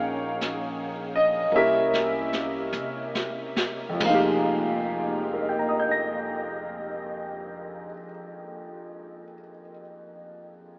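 A slow 4/4 swing of 45-56 BPM eases back even further through the opening, where the brushed drums play a fill, giving this melancholic, intimate jazz ballad fragment in F minor a drifting, unhurried pulse. The clear concert grand piano sits up front as the accompaniment, natural in tone with deep bass and a lush chorus, moving from Bbm7 through C7b9 before settling on Fm11. Beneath it, a woody, thumpy pizzicato upright bass on steel strings stays in the background and drops out at 7.9 seconds. The vintage brush kit comes in at 0.4 seconds and stops at 4.4 seconds, sounding distant and roomy with a punchy kick, a medium-tuned snare and a rolled-off top. A huge, wet ambient reverb soaks the dreamy mix, which carries an AM-radio character.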